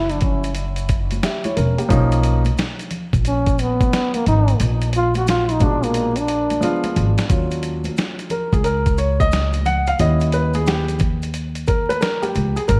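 A breathy, close-miked trombone with light vibrato carries the melody through a diffuse ambient delay in this nocturnal, mellow jazz-hop piece at 89 BPM in Eb minor, swung on the 16ths and cut from a longer recording. Pizzicato upright bass with a woody, steel-string tone and a gritty, compressed sampler-style drum kit with a thumpy kick sit up front, while ringing maracas and congas stay in the background, over a bed of vinyl crackle and light studio reverb. After a drum fill at 5.9 seconds, the dark upright piano, present since 1.2 seconds, takes the solo from 7.3 seconds over chords such as Ebm9 and Eb7b9.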